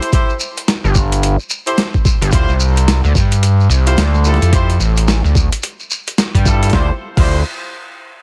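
Glitch hop with a playful, swaggering strut, this short cut from a longer piece rides a swung sixteenth-note feel over a dark minor-key progression moving from Am7 to Dm11. A clear horn section with light vibrato fires pop-style ensemble stabs, shaped by sidechain pumping, a low-pass filter and delay. Up front, a gritty, overdriven boom bap drum kit with a medium-tuned snare, hi-hat and crash sits alongside a thumpy electronic kick, both sampler-style and re-recorded in a small room. A grainy, mellow shekere adds acoustic texture until 6.7 seconds. At 0.8 seconds an aggressive, wave-folded synth bass enters, with a resonant filter pluck, sync-edged sawtooth bite and tube saturation. The mix is dry and squashed into a heavily compressed, radio-like sound.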